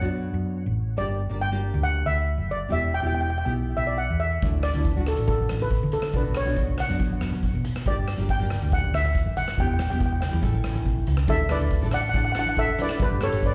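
A shimmering steel pan carries the melody up front in this bouncy, sunny calypso excerpt from a live club gig, over fingerpicked nylon-string guitar, a round, dark hollow-body electric bass, a boomy-kicked drum kit with hi-hat and rim click entering at 4.4 s, and very quiet, low-tuned congas joining at 4.9 s.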